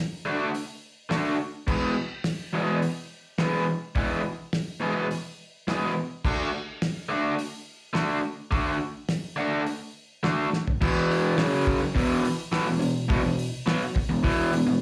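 A raw, bright, overdriven electric guitar opens the clip at 0.3 s with a double-tracked, picked riff in E mixolydian, moving between D and E chords with slapback echo, while a cloth-damped, thuddy acoustic kit joins at 0.5 s with a fat snare, tight kick, dark cymbals and a rolled-off top. This rowdy, swaggering garage rock cut sits at a straight 105 BPM in 4/4, tuned to A4 = 444 Hz, and sounds like a live gig heard through the venue's PA with light club reverb. A drum fill at 10.5 s pushes the song into a new section at 10.8 s, where the harmony moves to E5.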